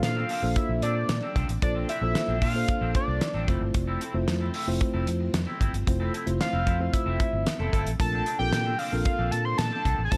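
Danceable and smooth, this excerpt from a longer early-eighties boogie funk piece moves at 113 BPM in a straight 4/4, resting on a Bbmaj9 that shifts to Fmaj7 and back. A dry, up-front 70s drum kit with a fat snare, tight kick and hi-hat sits under gated reverb, beside a dark, round, foam-muted fingered bass that sounds amped and punchy. Carrying the melody is a fat analog lead blending sawtooth and square wave with a sub octave, filter sweep and vibrato, mellow yet placed up front. Around it, a tine electric piano plays clean accompaniment through its built-in speakers, a bright, twangy picked guitar riff shimmers in lush chorus, and a very quiet string machine holds slow-attack sawtooth chords with ensemble chorus. The whole band hits an accent from 5.9 to 8.0 seconds, within which a distant, roomy horn section with octave doubling and vibrato adds a brief warm second line at 7.6 seconds.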